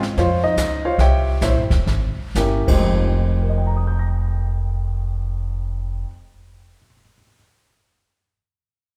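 A swung 4/4 groove slows over the opening seconds of this moody, cool jazz piano trio excerpt, moving through a rootless Bbm9, C7b9 and Fm9. The brush kit, with dark cymbals, a boomy kick, hi-hat and brushed snare, drops out at 2.8 seconds, and the up-front, woody, thumpy pizzicato upright bass stops at 6.0 seconds. The intimate baby grand, its action noise audible, carries the melody to the end in a concert hall's reverb.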